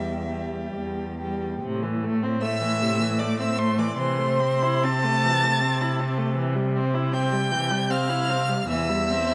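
Melancholic and solemn, this slow romantic string quartet movement in 3/4 sways with rubato as a rich, expressive first violin sings the high melody with vibrato and portamento over a close, smooth second violin, a clear, even viola accompaniment and an up-front cello bass, all bowed throughout the 9.3-second extract and bathed in concert hall reverb.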